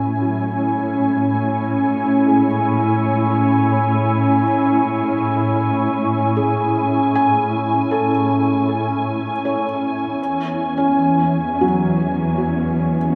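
An evolving, detuned wavetable pad sits up front in this luminous ambient excerpt in free time, holding slow-attack chords coated in ensemble chorus and its own reverb, moving from Amaj7 to E69 at 10.2 s. Beneath it a dark, bowed cello section carries the bass with expressive vibrato, while a felt-muted upright piano enters at 0.2 s and gradually fades in with soft, intimate arpeggios trailed by tape echo. A spring reverb with a 2.5 s tail bathes the echo-heavy mix.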